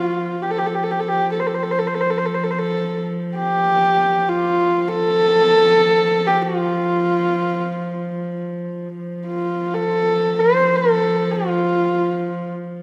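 A husky, up-front horsehead fiddle sings a proud, galloping Mongolian folk melody in free time and F gong mode, sliding between notes with light vibrato and a soft attack. Beneath it, a second, darker horsehead fiddle holds a quieter bowed drone on F, its vibrato and portamento giving the low line an expressive glow. Both sit in a moderate stage reverb, and this fragment of a longer piece closes as the melody stops at 12.5 seconds, leaving the drone to ring until 12.8 seconds.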